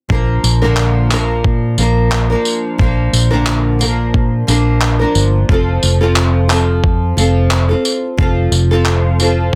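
A lightly swung 4/4 groove of thumpy kick, handclaps and tambourine from a gritty, compressed sampler-style kit recorded in a small room drives this sunny, carefree acoustic pop excerpt, as a dark, round, foam-muted fingered electric bass sits up front beneath a double-tracked, fingerpicked nylon-string guitar moving from Bb to F at 5.5 seconds, all under light reverb and a dense, heavily limited modern master.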